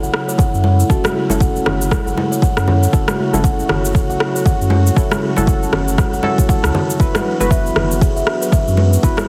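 Heavily compressed with a radio-like sheen and light reverb, this hypnotic afro house excerpt at 118 BPM in F# minor sets a buzzing, woody kalimba arpeggio under a low-pass filter sweep and digital delay over a smooth detuned pad, mellow chorused chord stabs, a round sine sub bass and overdriven cabasa and rim click, all pumping through sidechain apart from the percussion, as an up-front overdriven kick and ringing background congas join at 0.4 seconds and the harmony moves from F#m7 to Esus2/F# at 7.0 seconds.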